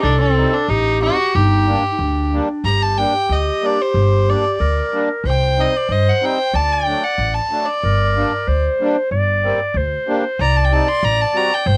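Festive yet bittersweet, this short klezmer excerpt moves at 93 BPM in a straight 2/4, set in G harmonic minor and tuned slightly high to A4 = 441 Hz. A clear, nasal violin carries the melody up front, its airy bow and light vibrato giving an earthy, close presence as it takes a solo from 2.6 seconds onward. Beneath it, a smooth-topped clarinet in a classical style plays a second line with the soft grain of cassette tape. A reedy, sweet accordion with light tremolo tuning fills in the accompaniment from 0.4 seconds, also tinted by tape, while a woody pizzicato upright bass anchors the low end. The harmony moves through Cm, Gm and D, all captured in a modest booth ambience with the homespun character of a cassette recording.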